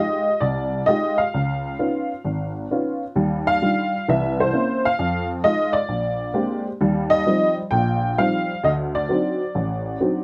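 Sophisticated and warm, this short cut from a longer solo jazz piece swings along at 131 BPM in 4/4, sitting in Eb major with a lilting eighth-note swing feel. A single honky-tonk upright piano carries the whole performance, placed up front in the mix, its detuned, jangly voice giving the sound a vintage, woody character. The piano ranges from a deep Ab1 up to G5, moving through rich extended harmonies such as Fm9, Db9, Ebmaj9 and C7b9 before settling onto Eb69 at 6.8 seconds and closing on D7b9. Moderate studio ambience with a short half-second reverb surrounds the instrument, and the overall production leans dark. The passage runs just over ten seconds, shifting into a new section at 6.8 seconds.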